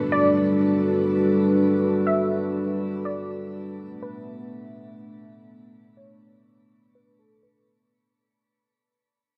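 A deep, nasal, detuned analog pad sits up front holding slow-blooming Gmaj7 and Bm7 chords, while a warbling, lo-fi plucked synth traces a chorused, echoing melody above it in this dreamy, blissful half-time hip hop excerpt, all wrapped in light digital reverb and dark production as it fades out across its 7.7 seconds.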